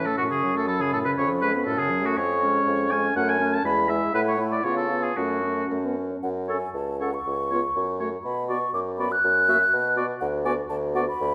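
Spirited and graceful, this brief excerpt from a quick classical-period movement for wind quintet moves in 2/4 with a supple rubato feel. A hollow, mellow concert flute carries the melody with a soft attack, vibrato and lifted highs, while the oboe adds a warm second line with a light vibrato. Beneath them, a clarinet with a clear tone and a French horn with its own vibrato fill in the accompaniment, and an up-front bassoon anchors the bass. All five players sound together from the start, with the flute and bassoon holding on until 11.3 s. The minor-key harmony circles its home chord before a new passage begins at 6.2 s, all set in a moderate scoring-stage reverb.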